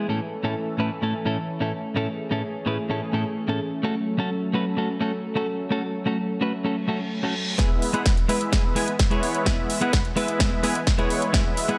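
Awash in a moderate stage reverb, this festival progressive house excerpt feels euphoric and triumphant, opening on a clean, compressed electric guitar up front with dub echo and sidechain pumping, over a lush, airy unison pad carrying chorus, phaser and 12-bit sampler grit. A reverse cymbal enters at 6.8 seconds, leading into the build-up at 7.6 seconds, where huge, bright supersaw chords arrive with a filter sweep, dub echo and pumping. A punchy, layered electronic kick and a big-room kit with metallic hats and a punchy snare drive a drum fill toward the end.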